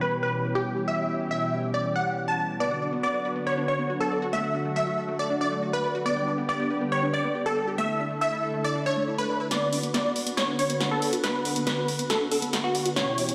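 This euphoric, driving uplifting trance fragment opens with a mellow, punchy supersaw stab melody under a filter sweep, a very quiet wave-folded pluck line, and a thick, airy pad with chorus, all set in a lush hall that sounds played back through a big system in a bare stone room. At 2.6 seconds a bright phaser-tinged pluck begins arpeggios with tape echo, and the quiet pluck line stops at 9.4 seconds. From 9.5 seconds a tape-warm analog drum machine brings a punchy snare and hi-hats in a fill as the build-up starts and a filter sweep runs over the pluck.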